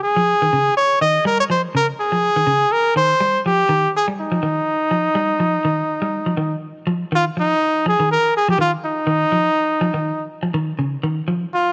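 Afrobeat with a funky, driving, lightly swung feel, in which a clear trumpet with light vibrato carries an up-front pop-style solo melody over dark, clean, picked electric guitar arpeggios bathed in spring reverb, moving from Eb9sus4 and Ebadd9 to a rootless Dbadd9 at 7.1 seconds in a small-room setting, all cut from a longer piece.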